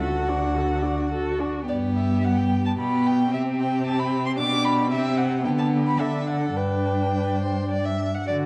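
Cheerful and graceful, this quick classical-period movement for string quartet moves in 3/4 at around 104-114 BPM in G major, with a flexible, rubato feel. A dark-toned first violin carries the melody across the span of D5 to D6, singing with vibrato, expressive portamento and bowed phrasing. Beneath it, the rich-toned second violin plays a distant second line with similar vibrato and sliding touches. The viola fills in smooth, even accompaniment with a mellow top, while the cello anchors the bass from D2 to D3 with expressive vibrato and portamento. The harmony opens on D, settles onto G, and passes through C and G/D back to D before resolving on G near 6.6 seconds, all within a short passage cut from a longer piece. The quartet sits in a reverberant recital hall with a dusky, warm production.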